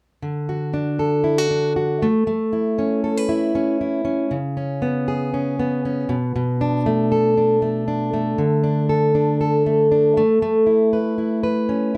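A fingerpicked, plugged-in steel-string acoustic guitar opens this short pop excerpt at 0.2 s and carries it alone through its close at 12.0 s. The mood is sunny and easy-going, moving at 118 BPM in a straight 4/4. The guitar has a full-bodied jumbo tone, sits up front, and ranges from B2 to B4. Its chords move from D through Aadd9, C#5 and Bm7, then shift at 8.4 s to D5 and back to Aadd9. Light reverb and a dark production frame the playing, and the clip is cut from a longer piece.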